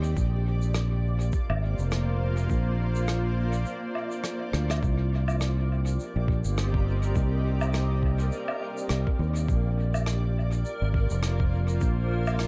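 A blurred, cloudy granular cloud pad holds sustained chords over a round, dark fingered electric bass with tube saturation and acoustic shaker, rim click and woodblock trailing dub echo, joined at 0.2 s by a muffled, thumpy electronic kick in this deep, spacious ambient dub excerpt at 103 BPM in C minor, with a break and drum fill before the move from Bb to Cm at 4.8 s and a reversed, dreamy backwards swelling texture entering in the background at 5.6 s.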